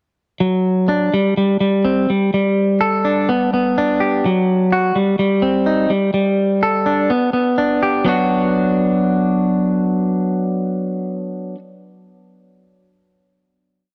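A lone clean electric guitar opens this short, wistful yet carefree rock piece, its twangy, compressed tone sitting up front as it plays fingered, picked arpeggios through a verse of chords such as D/F#, Dsus4, Bm and Cm. A moderate plate reverb lends a long tail to the dark, warm production. At 8.1 seconds the guitar settles onto a final Bm/F# chord that rings out until the close.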